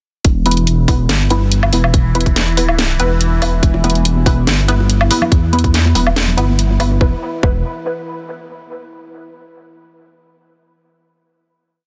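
A deep, rumbling detuned saw bass chops out dark phrases up front in this heavy, meditative deep dubstep piece in E minor at 142 BPM with a half-time feel, driven by a tight, tape-warm electronic kick and a garage kit of cracking snare, hi-hats and low woodblock, while muted, mellow off-beat chord stabs pass through phaser and dub echo, a resonant, wave-folded drone with moving overtones hums low under chorus, and ringing bongos and congas with dub echo join in the background at 3.7 seconds before a final chord follows the drop at 7.0 seconds.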